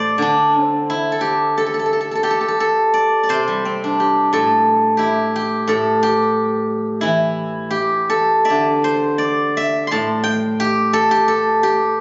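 Captured on a phone in a room with the ambience of a club and the moderate reverb of a scoring stage, the sound is dulled at the top, losing everything above 7.5 kHz. A solo steel-string zither, played with fingerpicks, sits up front with a silvery, ringing tone across a span from A2 to C6 in a free, rubato Chinese traditional style. The mood is longing and contemplative, with a short opening passage giving way to a new section at 3.0 seconds in this 12-second piece cut from a longer work.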